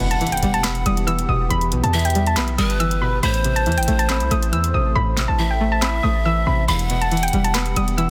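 Dark and hard-hitting, this short trap cut from a longer hip hop piece moves at 139 BPM in a half-time feel, set in E harmonic minor and tuned slightly sharp to A4 = 441 Hz. A soft, round pluck carries the melody high between G5 and E6, treated with chorus and tape echo, while a breathy, bamboo-toned pan flute with a crisp chiff and an unsteady straight tone plays a second line beneath it, also trailed by tape echo. A twangy, string-like resonator pluck with chorus supplies the accompaniment, and a deep, moody analog pad with a sub octave sits in the background holding sustained chords. Up front, a punchy, heavy 808-style bass drives the low end, and a very quiet electronic impact opens the passage, lasting until 1.5 seconds. The trap kit enters at 0.1 seconds with sharp snare, handclaps and bright hi-hats re-recorded in a small room, the hats dropping out between 5.0 and 6.7 seconds, while the harmony moves from Em to Am at 3.2 seconds and back to Em at 6.7 seconds, all within a digital ambience and a dense, heavily limited modern master.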